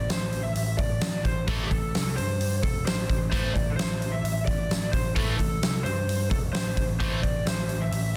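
A huge, up-front arena drum kit with a fat snare and punchy kick drives this heavy, menacing hard rock excerpt in A minor at 130 BPM, alongside a round, foam-muted picked bass and a dark lead guitar through a small cranked amp with overdrive and analog delay carrying the melody, while two bright rhythm guitars, one scooped and high-gain and the other tight and distorted, play the riff from 1.5 to 7.2 seconds, all in a small room ambience with a dense, heavily limited modern master.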